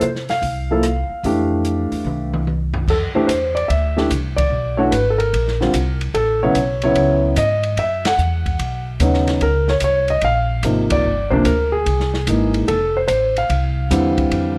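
Swinging eighth notes at 147 BPM in 4/4 drive this warm jazz piano trio excerpt, where an intimate concert grand carries the melody with audible action noise and deep bass, a woody pizzicato upright bass sits up front, and an airy acoustic drum kit with dark cymbals and a boomy kick adds a short fill before band accents land at 4.3, 8.0 and 10.8 seconds, all in light reverb over chords that travel from Fmaj7 through Bm7, Db69 and C7alt back to Fmaj7.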